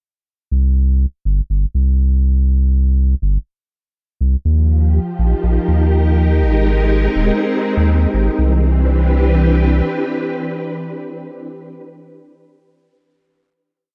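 A deep, round sub bass with tube saturation opens this playful and glitchy IDM piece at 0.5 s, holding long gliding notes up front at 122 BPM in a straight 4/4, before a silky string machine with ensemble chorus and 12-bit sampler grit enters at 4.5 s with slowly shifting sustained chords, moving from Ebadd9 through Abmaj9 to a closing Cmaj9 at 8.4 s, all in a dry room.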